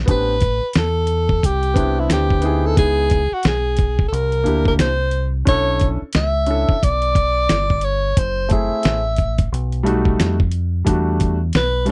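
The sound is dry and close, like a 1970s studio recording with little reverb, and every part sits up front. This is a cool, mellow jazz-hop cut from a longer hip hop piece, moving at 89 BPM in 4/4 with a 60% swing on the sixteenths. A gritty, compressed sampler-style soul drum kit sets the pulse with a thumpy kick, a fat snare and hi-hat, while a dark, round fingered electric bass holds the low end from the very start. A woody, polished upright piano supplies the harmony through a jazzy progression that opens on Am11 and moves through chords such as C9, Bm11 and B7b13 before settling on Em11. Over it a clear, punchy alto saxophone carries the melody in a jazz style, with a subtone and light vibrato, and it takes a brief solo from 10.9 s to the close.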